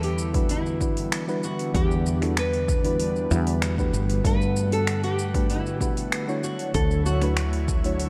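Sunset chillout in E dorian at 96 BPM, smooth and relaxed, cut from a longer piece, where a fingerpicked nylon-string guitar melody with delay floats over an airy, breathy pad with chorus, a growly, round fretless bass with tube saturation, a warbling vintage FM electric piano with chorus and tape echo entering at 0.3 s, and an overdriven deep house kit of finger snaps, metallic hats and shaker joined by a punchy electronic kick, all moving through Em7, Gmaj9 and Dmaj9 in a dark production with light reverb.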